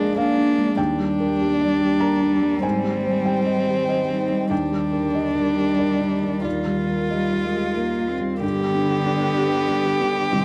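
Neoclassical piano and strings in a rubato 3/4, tender and hopeful, where a clear, focused solo violin sings the melody with vibrato over a bowed cello second line, a dark, felt-muted upright piano with audible action noise sits up front, and a very quiet warbling, nostalgic tape-like pad holds chords throughout, joined by a background viola and a ringing, thumb-plucked harp playing arpeggios at 8.4 seconds as the harmony turns to G, all captured in a dry, close 1970s-style studio sound cut from a longer piece.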